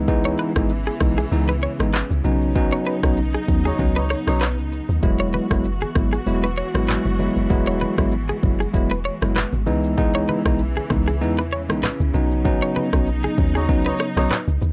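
A sunny, breezy afrobeats groove at 97 BPM in 4/4 rides a light sixteenth-note swing, driven by an electronic, produced afro-pop drum kit up front with a deep kick, metallic hi-hats, handclaps, rim clicks and shaker. Beneath it a deep log drum bass gives round, dark, percussive notes with a fast attack and a decaying tail, while a bell-like tine electric piano plays bright, clean accompaniment near the front. A twangy, direct-recorded clean electric guitar picks a compressed riff in a high register, and a lush, woody string section holds bowed chords with vibrato through the whole passage in E major, moving from C#m7 to Badd9 and Eadd9. A mellow, roomy horn section adds brief second lines at 3.7 seconds and again at 13.5 seconds, during the band accents, and very quiet, low-tuned congas with a thick, damped skin join at 5.0 seconds. The sound is dry and gritty with little reverb, and the clip is cut from a longer piece.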